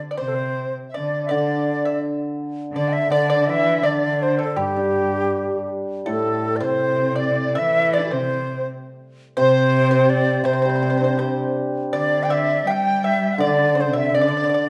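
A pipa opens this fragment of a longer Chinese chamber ensemble piece, its fingerpicked notes dry and percussive, and within a moment the other voices join in a pastoral, festive mood at a loose, rubato 82 BPM in 2/4. Up front, a bright, airy xiao carries the melody with tongued notes and vibrato, its end-blown bamboo tone distinctly reedy. Beneath it, a large dizi adds a second line from the background, its buzzing membrane giving a pure, crisp-edged sound with its own vibrato, while a single bowed cello traces a dark, woody low line that sits distant in the mix. From 1.3 s a hammered dulcimer comes forward with shimmering, ringing accompaniment that spans from the low register up into the middle. A moderate recital hall reverb surrounds the ensemble, and the music moves into a new section at 6.1 s, continuing until the cut at 14.7 s.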